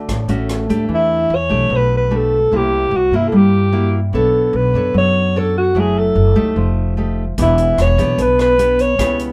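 A straight 4/4 bossa nova pulse at 148 BPM carries this relaxed, breezy fragment of a longer piece. A fingerpicked, classical-style nylon-string guitar sits up front beside a woody, growly pizzicato upright bass as the chords move from Dmaj7 through C7#11 and Bm9 to F9 and Em7. A mellow, breathy alto saxophone plays the solo melody in a jazz style, roomy yet up front, with vibrato and scooped notes; a distant drum kit with a punchy kick, hi-hat and rim click and a rolled-off top is heard only from 0.1 to 0.8 seconds before returning at 7.4 seconds, and light reverb colours the mix.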